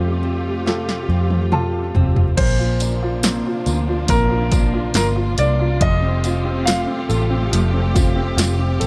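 A straight 4/4 pulse carries this emotional, hopeful pop ballad, where a clear, polished baby grand piano sings the melody over woody upright piano accompaniment, lush bowed strings set back in the distance, fingerpicked nylon-string guitar arpeggios with digital delay, and a dark, round muted electric bass, while a punchy electronic drum kit enters at 0.7 seconds and a jingly tambourine joins at 2.8 seconds, all in a dry, close-up sound.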